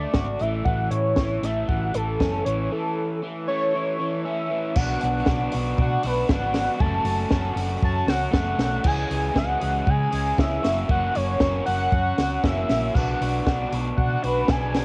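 An octave-doubled synth lead carries the melody in this wistful, carefree indie rock excerpt, its bold, retro sawtooth tone thickened by detuning, a sub octave, ring modulation, chorus and vibrato, with sustained, mellow notes. Beneath it, a crunchy overdriven guitar plays a picked, double-tracked riff coloured by cassette tape saturation. A hollow-body short-scale electric bass, fingered and amped, adds a round, dark low end. A compact cocktail drum kit enters at 0.1 s, with a dry sound, a punchy kick, a high-tuned snare, dark cymbals and the same cassette tape grit, all set in a small-room home recording on cassette. After a break from 2.7 to 4.8 s, the music moves into a longer passage whose chords shift from B minor through F-sharp minor, C-sharp minor and F-sharp before returning to B minor.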